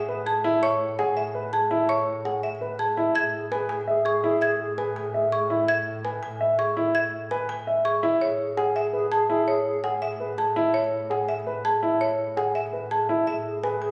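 Hypnotic and bright, this excerpt of minimalist classical pattern music runs at 332 eighth-note beats per minute in 7/8 in A major, with a woody, padauk-barred marimba carrying the melody over dark, intimate baby grand piano arpeggios with audible action noise and dry, rubber-mallet xylophone arpeggios sitting high above. A bowed double bass holds a rich, even A2 in the distance, while a pure, tongued alto flute with vibrato drifts in from afar on a single G#4, sounding briefly at the very start and again from 3.2, 8.2 and 13.3 seconds as the harmony moves between Amaj9, E/A and Amaj7sus2. The whole is heard through a reverberant recital hall, as if captured on a phone from within the room.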